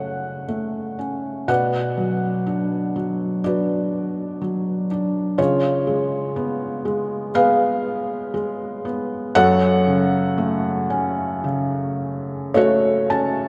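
A felt-muted upright piano opens alone on an F-sharp minor chord, its mellow, intimate tone sitting up front with the soft clatter of its action clearly audible. This is a reflective, melancholic piece of lyrical classical solo piano in F-sharp harmonic minor, moving in a free, rubato 4/4 at roughly 53 to 63 BPM. The harmony turns to B minor at 1.5 seconds, leans into a C-sharp seventh at 5.4 seconds, and settles back on F-sharp minor at 9.4 seconds, with the playing spanning from F#2 up to A5. A short piano fill closes the passage in its final moments before the cut. The whole performance rings out in a vast, echoing cathedral space whose long, wet reverb lingers well beyond each note, giving this brief excerpt from a longer piece a hushed, suspended quality.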